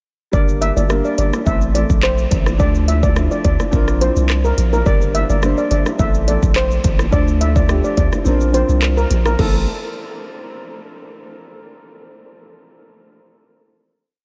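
A bouncy, hypnotic dancehall piece at 106 BPM in A phrygian opens at 0.3 seconds with everything but the bongos entering together: a metallic, shimmering steel pan carrying a syncopated hook with soft rubber sticks and a touch of delay, a boxy grand piano pushing open-voiced chords with short sustain through an analog chorus, and a punchy sine sub bass with a pitch-drop attack playing a syncopated low line with slides. The electronic afro-pop drum kit lays down a sparse dancehall beat with a deep kick, crisp hats, rim clicks, handclaps, shaker and crash cymbal, sitting up front alongside the bass. Low-tuned acoustic bongos join at 0.6 seconds, round and very quiet, heard distantly as if in a large room. The chorus cycles through Gm, Am, Dm and Bbadd9 twice, with the kick dropping out from 8.3 to 9.4 seconds before the piece settles onto a final Am chord at 9.4 seconds. Light reverb gives the mix a gentle sense of space.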